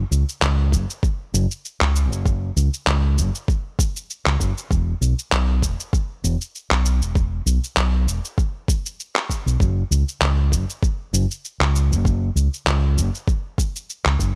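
A dark, round fingered electric bass anchors this smooth sunset chillout excerpt at 98 BPM in 4/4, sitting low and up front from the very start with an amped tone and a light 16th-note swing. Gritty, compressed electronic shaker and handclaps join at 0.1 seconds, and a soft, tape-warm electronic kick enters at 0.7 seconds, each carrying a touch of studio reverb. The overall sound stays close and dry, with the bass the most prominent part.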